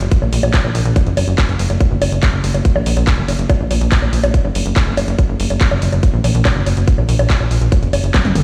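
A straight 4/4 pulse at 142 BPM drives this hypnotic, psychedelic trance passage in F# major, cut from a longer piece. A tight, layered electronic kick sits up front from 0.1 s, anchoring the groove. Around it, a techno drum kit of bongos, handclaps, warm hi-hats and toms adds produced electronic texture, its sound re-recorded in a large room. The plucky analog bass, punchy and funky, moves between F#1 and A#1 with a fast attack and decaying filter pluck, its sawtooth, square and triangle tones wave-folded and placed up front. The whole mix carries little reverb yet sounds as if played on a big sound system in a bare stone room, and a drum fill arrives at 8.1 s just before the close.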